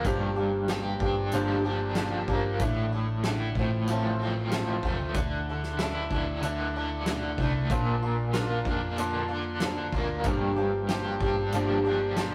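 Dusty and reflective, this short cut from a longer folk rock and heartland rock piece moves in a steady, straight 4/4 feel. A boxy, up-front picked acoustic guitar with a swing-style touch carries the accompaniment throughout, while a bright, double-tracked garage electric guitar plays a riff, its overdrive and tremolo giving it a raw bite. Underneath, a dark, round hollow-body short-scale bass is picked with an amped tone, and a natural country drum kit in a small room sets hi-hat against a fat snare and a punchy kick. The chords travel from Gm7 through Asus4, F/A, Dsus2 and Bb before landing back on Gm7 at 10.2 seconds. Light reverb and the rough rehearsal-room sound keep the whole thing loose and unpolished.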